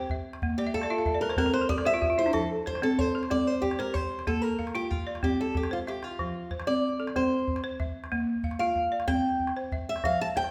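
The rhythm rolls along in a lilting 12/8 pulse with a straight feel, kept by a small calabash whose compressed, saturated knock sits beneath the melodic parts. This joyful West African string and xylophone music is a short cut from a longer piece. A picked old ladder-braced acoustic guitar carries the melody as a solo from the start, its dark, boxy tone and old strings placed up front. Beside it, a balafon struck with hard rubber mallets plays arpeggios with a woody, dry, buzzing, mid-forward sound, adding a fill between 0.6 and 2.3 seconds. A brief drum fill arrives at 5.7 seconds, while the harmony circles mostly among F, Bb and C chords. A recital hall reverb gives the recording a wet, spacious glow.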